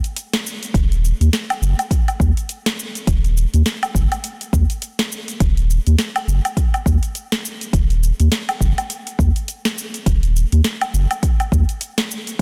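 An afro-pop drum kit opens this organic downtempo piece on its own, with cabasa, metallic hi-hat, a sharp snare and woodblock sitting up front in a produced, electronic sound. At 0.7 seconds a layered electronic kick drum arrives with a deep, forward thump, joined at the same moment by a round, sine-like sub bass that spans Eb1 to Eb2. The bass has a fast attack and sustained notes, and its sidechain pumping gives it a breathing push. The swung sixteenths and lean three-part arrangement create a hypnotic, earthy mood that holds steady through the short cut from a longer piece, ending at 12.4 seconds. The mix is dry, with little reverb, and the master is dense and heavily limited in a modern style.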